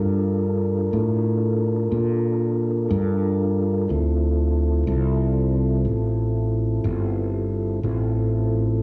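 Blues in a slow, mournful and smoky 12/8 sway, this short cut from a longer piece sets a mellow, flute-like tonewheel organ holding soft sustained chords through a slow rotary speaker, with a touch of key click and cassette grit, above a punchy, up-front fretless electric bass, moving from Gm9 to Dm9 at 3.9 seconds in a dry, intimate home recording.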